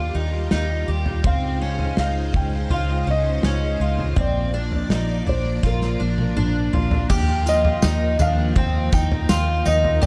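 A round, foam-muted electric bass sits up front in this floating, ethereal dream pop clip, joined by a dark, mellow felt-muted upright piano carrying the melody through analog delay and shimmer reverb, octave-doubled fingerpicked twelve-string guitar arpeggios with audible finger squeak and lush chorus, and soft-attack sawtooth string-machine violin chords bathed in ensemble chorus, while a loose indie drum kit with a punchy kick and tambourine enters at 0.5 seconds and plays a fill from 5.6 seconds before the harmony shifts at 7.1 seconds in an echo-heavy mix with its highs rolled off.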